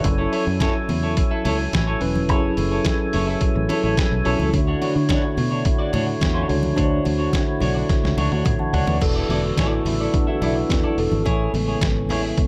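A straight 4/4 disco groove at 107 BPM drives this celebratory, glamorous clip, built on a muffled, pitched-down sampler-style drum kit with a thumpy kick up front, a round, foam-muted fingered bass, very quiet low-tuned congas, a clean picked electric guitar with spring reverb, a fat tonewheel organ with key click on slow rotary speaker, and a mellow tine electric piano that takes a solo from 9.0 seconds after a drum fill, as the chords move from F#m7 and Dmaj7 to E7sus4 and Amaj7 in a dark, warm production with light reverb.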